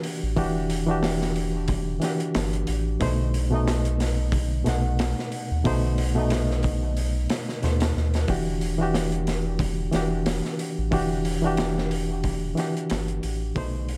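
A crunchy breakbeat drum kit lays down a 91 BPM groove in 4/4, its sixteenths swung at 56%, with a tight kick, a medium-tuned snare and hi-hat sounding saturated and gritty under a rolled-off top. This smoky, brooding trip hop fragment, cut from a longer piece, sits in E minor with tuning at A4 = 436 Hz. A round, deep sine sub bass joins at 0.2 s, its notes sustained and mellow beneath the beat. Up front from the very start, a reedy, bright electric piano plays the accompaniment through its built-in speakers, lightly overdriven and colored by harmonic tremolo and tape echo. The harmony moves from Em9 to B7b9 at 3.0 s and back to Em9 at 8.3 s, all inside a small room ambience, before the recording fades out from 11.8 s to its close at 14.0 s.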